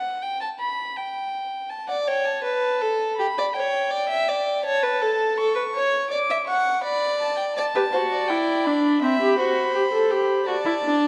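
Moving in a straight 4/4 at 82 BPM, this lively, elegant baroque-style fugue for string quartet opens with a single warm, period-style violin carrying the melody, joined at 1.9 s by a second, richer gut-string violin on a lower line and at 7.7 s by a reedy viola accompaniment, all bowed with light vibrato and bathed in a wet scoring-stage reverb as the harmony passes through E minor, A, D, G and A minor in this short cut from a longer piece.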